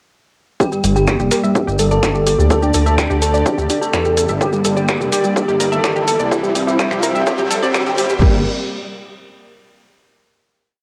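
A cassette-worn home recording set in a lush digital hall, this short, dramatic melodic techno piece drives along at 126 BPM in G dorian, building from 0.6 s over a Gm, Dsus4 and C progression before landing on a final Gm chord at 8.2 s. A fat, detuned sawtooth lead repeats a sixteenth-note riff over a pedal note with vibrato, doubled an octave higher by an eerie, inharmonic FM bell, while a gritty oscillator-sync bass plays a dotted rhythm up front and a tight sequenced synth runs a 12-step loop that drifts against the bar. Beneath them an evolving resonant pad swells, a punchy four-on-the-floor kick and a tape-toned analog drum machine with snaps, hats and crash keep time, grainy maracas add hand-played sixteenths, and a riser enters at 3.6 s to push the build.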